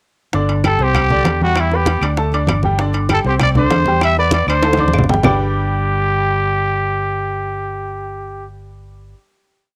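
Festive and sunny, this short salsa piece at 196 BPM in G major opens on a montuno vamp where a bright, woody upright piano plays octave montuno figures with cassette-tape colour and plate reverb, a dark, punchy fingered electric bass anticipates the chords in a tumbao, close, dry bongos and low-tuned congas drive the groove alongside ringing timbales and vintage claves, and an up-front growling trumpet with a raspy edge and light vibrato states call-phrase motifs, all lifted by a drum fill at 4.6 seconds before the band settles on a final chord at 5.2 seconds, sounding like a cheerful home recording on cassette.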